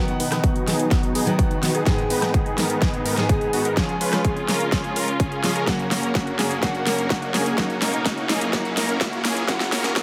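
Bright, detuned supersaw chords lead this triumphant, uplifting excerpt of festival progressive house, their riff pumping against the kick through cassette-tape colour, a low-pass filter sweep and dub echo, while a fingerpicked steel-string acoustic guitar with fresh strings and audible finger squeak adds pumping, echoing accompaniment. A veiled, con sordino string section sustains dark chords in the background under its own filter sweep, as the overdriven big-room kit with a huge snare, metallic hats and rim clicks plays a build-up fill, joined at 0.4 seconds by a punchy, up-front electronic kick. A very quiet riser enters at 4.4 seconds, and a lush digital hall reverb surrounds the parts as the chords move from B through G#m, C# and F#.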